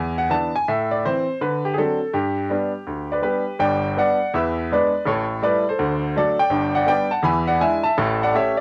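Stride jazz for solo baby grand piano, playful and swinging in a brisk 4/4, captured on a home cassette recording with a moderate studio ambience. The piano sits up front with a bright, brilliant, natural tone and long sustain, ranging from low G1 up to B5 as the harmony moves through circling dominant chords like E7 and A7 back toward G. This short cut from a longer piece lasts just 8.6 seconds, shifting into a new section at 3.6 seconds.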